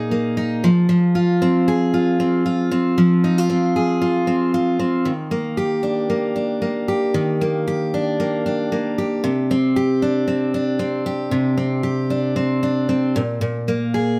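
A picked steel-string acoustic guitar plays alone throughout this tender, reflective pop excerpt, its full-bodied dreadnought tone sitting up front in a light reverb. The opening section moves from Bb7sus4 to Fm over a lightly swung sixteenth-note feel. At 5.1 seconds a second section begins, drifting through Ebmaj7 and Csus2.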